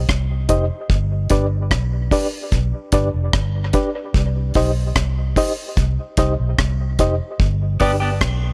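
A foam-muted, round and punchy fingered electric bass opens this heavy, hypnotic dub reggae excerpt at 74 BPM in C harmonic minor, joined by a dry, deep drum kit of tight kick, hi-hat and rim click, while a reedy, lightly overdriven electric piano plays stabs through tremolo and dub echo over Cm and G in a small room, and a dark, clean picked electric guitar with dub echo appears only briefly at 7.8 seconds.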